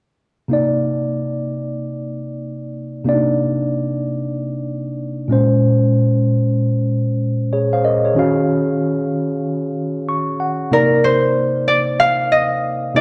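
Introspective and late-night, this R&B excerpt at 94 BPM with a swung sixteenth feel opens on a bright, clean tine electric piano heard through its built-in speakers, moving through Cm9, Bbm9 and Ebm9 and adding a fill at 9.7 seconds, before a ringing, fingerpicked concert harp melody enters up front at 10.7 seconds, the band playing together in one room under wet large-studio reverb.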